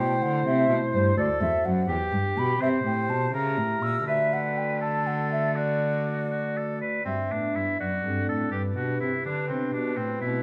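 In a straight-felt 6/8, this flowing, radiant excerpt of a baroque-style classical sonata movement features an airy, wooden-toned flute with a crisp attack carrying the melody, a clear oboe with vibrato on the second line, a soft, hollow pipe organ on flute stops filling in the continuo accompaniment, and a gut-string bowed cello up front on the bass, the ensemble set in the resonant reverb of a recital hall.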